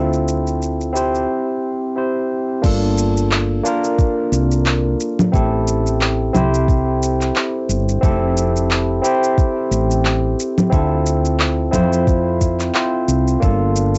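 A barky tine electric piano and a woody fretless bass open this wistful sunset chillout fragment, lifted from a longer piece, with a deep house drum kit of congas, crash cymbal, handclaps and shaker joining almost at once. The electric piano sits up front, clean and played through a combo amp, colored by cassette tape and an analog delay as it moves over Dm7 and C before a brief break between 1.3 and 2.6 seconds. At 2.6 seconds a soft, tape-warm electronic kick enters as the harmony opens onto Gm9, then drifts through Am7, Fmaj7 and Dm7 before settling back on Gm9. The hollow-body fretless bass, direct and amped and placed up front, gives the low end a warm, woody glow beneath the layered, produced percussion and its gentle swing. A moderate booth ambience and the dulled top end of a home cassette recording lend the whole a warm character.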